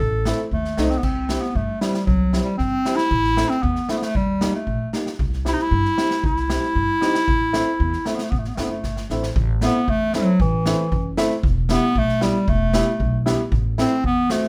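Light reverb gives this bittersweet, festive klezmer fragment a gentle sense of space, in a straight 2/4 at 115 BPM in A dorian sharp4, tuned to A4 = 438 Hz. Up front, a clear, close-miked clarinet plays the melody in classical style. Beneath it sit thumpy pizzicato upright bass on steel strings, a mellow, worn, woody, slightly detuned upright piano with audible action noise, and a street-band drum kit with a boomy kick, a medium-tuned snare and dark cymbals in an airy big room. A drum fill at 8.8 s leads back to the opening theme, as the harmony moves from Am through C and D# to Em before closing on Am.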